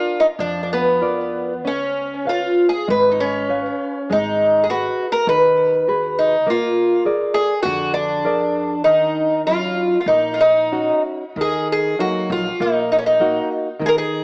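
Passionate and longing, this rubato fado-style ballad in Eb minor at 99 BPM sets a shimmering, octave-doubled picked twelve-string acoustic guitar up front on the melody over a thumb-plucked nylon-string guitar with audible finger squeak, both bathed in plate reverb, while a woody, thumpy pizzicato upright bass sits in the background from 0.4 s to 14.0 s, the whole excerpt coloured by a small wet room and the warbly pitch drift and small-speaker sound of worn cassette tape, cut from a longer piece with a shift to a new section at 11.4 s.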